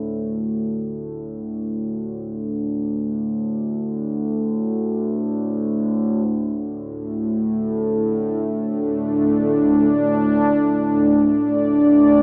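Dark ambient drone in free time, ominous in mood, cut from a longer piece and heard through a dreamy, reverb-soaked mix with a lo-fi AM radio quality and a long plate tail. A warbling, vintage analog drone built from sawtooth and pulse waves holds the low register throughout, its tone evolving under a filter sweep during the first 6.3 seconds. At 6.3 seconds a sweeping resonant pad enters with sustained chords, its detuned sawtooth layers, breathy noise and filter swell giving it an airy, bright presence above the drone.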